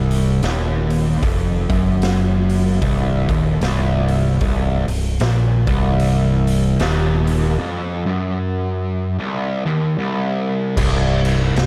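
A double-tracked fuzz guitar sits up front, grinding out a low, distorted riff over a C minor chord in this heavy, sludgy stoner and doom metal passage, cut from a longer piece, at 76 BPM with a swung 4/4 feel. Beneath it, a growling overdriven fingered bass adds weight down low, while a raw garage drum kit with a punchy kick, gritty saturation and a bright stone-room pump drives crash, ride, hi-hat and snare. A break arrives at 7.6 seconds, and the harmony drops away at 10.8 seconds, all within a dark production with light reverb.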